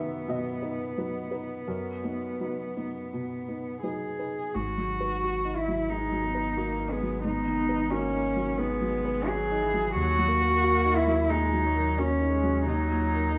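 Reflective and longing, this rubato neoclassical passage pairs an intimate, mellow felt-muted upright piano with a veiled con sordino cello line sung with portamento and vibrato, while a round sine sub bass enters at 4.6 seconds and a dark muted viola joins at 5.9 seconds, the harmony drifting from Bmaj7/F# through G#m7 to D#m inside a wet recital hall reverb.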